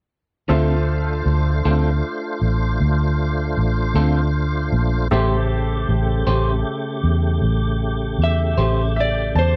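A dry, close, smoky slow blues excerpt in 12/8 at 52 BPM in D minor opens at 0.5 seconds with a dark, round, foam-muted electric bass up front, a slightly detuned upright piano with audible action noise, a slightly broken-up picked electric guitar with harmonic tremolo, and a full, clean tonewheel organ holding sustained chords through a slow rotary speaker and chorus vibrato, moving from Dm7 to A7#9 at 5.1 seconds before a soulful electric slide guitar takes the melody at 8.2 seconds and the piano adds a fill at 8.6 seconds.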